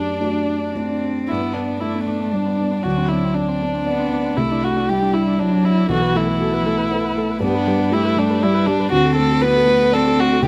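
Neoclassical piano and strings in a rubato 3/4 at 118 BPM, melancholic and fragile, cut from a longer piece. A dark, airy-bowed solo violin carries the melody up front over a close cello second line and a felt-muted upright piano whose thick felt and audible action noise give it an intimate, mellow softness, while a very quiet chamber string section holds sustained chords sul tasto. At 1.3 seconds a nasal, woody viola joins in the background as the harmony moves through G, D7, Cadd9 and B7sus4, all in a light reverb.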